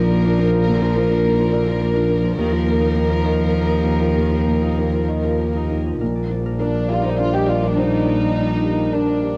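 Neoclassical piano and strings in a hopeful, intimate mood, this rubato 3/4 passage at 96-108 BPM, cut from a longer piece, sets a dark chamber violin section's soft-attacked sul tasto melody up front over a rich, floating cello second line, a felt-muted upright piano with audible action noise, a very quiet airy viola, a bright ringing harp playing arpeggios and a warm double bass with tube saturation, with tape-worn violins, cello and piano in a lightly reverberant home cassette recording that settles into Bb major at 6.0 s.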